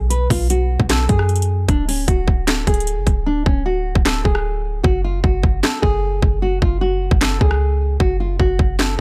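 An overdriven electronic trap drum kit dominates this menacing, brooding hip hop excerpt, with a hard-clipped kick, a sharp snare, metallic hi-hats, handclaps and rim clicks that sound re-recorded in a small room and sit up front. The trap groove runs at 152 BPM in 4/4 with a half-time feel, and the hi-hats drop out from 3.3 seconds to the end. Beneath it, a clean 808-style bass supplies a deep, boomy sine tone with a fast attack and a decaying tail. A dark nylon-string guitar carries the fingerpicked classical melody in a middle register, also placed up front. The harmony in F# harmonic minor moves from B5 to D, then settles on F#sus2 at 4.8 seconds, all in a dry, close mix.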